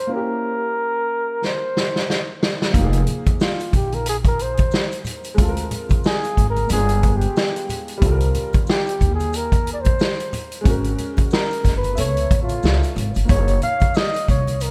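A breathy flugelhorn sits up front with light vibrato and scooped notes, its mellow, vintage jazz tone trailed by delay, and it takes a solo from 2.7 seconds to the end of this excerpt. This mellow, nocturnal jazz-hop track moves at 91 BPM in 4/4 with a swung sixteenth-note feel. A worn, slightly detuned upright piano accompanies throughout, its woody sound softened by a lush chorus. The vintage drum kit enters at 1.4 seconds with a fill, bringing a punchy kick, a medium-tuned snare and hi-hat in a roomy, distant sound with a rolled-off top. A woody, thumpy upright bass on gut strings and soft-handed maracas and congas, close and dry in the background, join at 2.7 seconds. The harmony runs through rich jazz chords such as Fm7, G7b9 and Db7alt, settling on Gb69, all set in light reverb and small room ambience.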